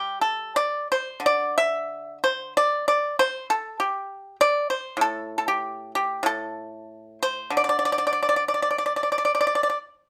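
Chinese traditional solo plucked-string music, elegant and serene: a bright, percussive pipa played with fingerpicks sits dry and up front with light reverb, moving freely in rubato across a range from A2 to E5 in this short excerpt cut from a longer piece.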